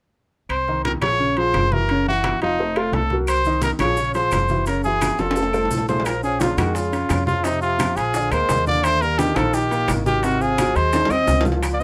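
Lightly reverberant and driving, this fiery Afro-Cuban jazz excerpt in Bb minor at 172 BPM puts a bright, punchy trumpet with scooped notes up front over woody pizzicato upright bass, a grand piano with audible action noise, low-tuned thick-skinned congas, ringing metal-shell timbales and compressed claves, with grainy distant maracas arriving at 3.3 seconds, a breathy, whispered tenor saxophone second line joining at 5.9 seconds and round, soft-handed bongos at 6.1 seconds, as drum fills close each half.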